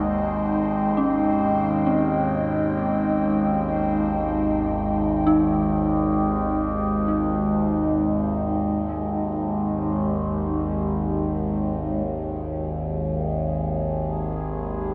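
A deep, moody analog pad holding sustained chords and a resonant drone with moving overtones sit up front from the start, while a bubbling texture of random filter steps drifts in the background and fades out across the first 12.1 seconds. At 1.0 seconds an eerie, inharmonic FM bell with a vintage warble begins mellow arpeggios far back in the mix, its dub echo trailing off until 12.5 seconds. This dark ambient drone, cut from a longer piece, feels cavernous and is steeped in a wet spring reverb.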